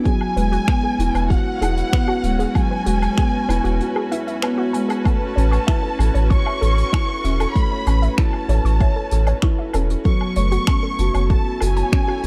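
Piano and strings electronica with a hopeful, luminous glow, where a felt-muted upright piano riff with audible action noise and delay sits over a deep, up-front electronic kick (dropping out from 3.8 to 5.1 seconds), jazz brushes with finger snaps and woodblock, and a round analog bass pumping against clear sustained symphonic string chords, while a warbly, lo-fi pluck arpeggiates in the background and a distant, lush violin section carries the melody high above, all in a dark, warm small room.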